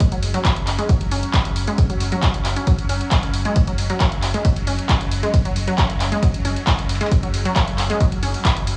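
A straight 4/4 pulse at 135 BPM drives this dark, hypnotic peak-time techno fragment, built on a punchy electronic kick, an analog drum machine's handclaps, hi-hat and ride, and a very quiet, gritty sampler-style kit adding ride and snare, while a thick saturated sub bass holds F#1, a squelchy, detuned blip pluck with chorus, tube saturation and tape echo plays its riff between F#3 and C#4, and a swarming, wave-folded drone with built-in reverb hangs over an F#5 chord, the drone, pluck and bass all pumping against the kick in a dry, gritty small-room mix.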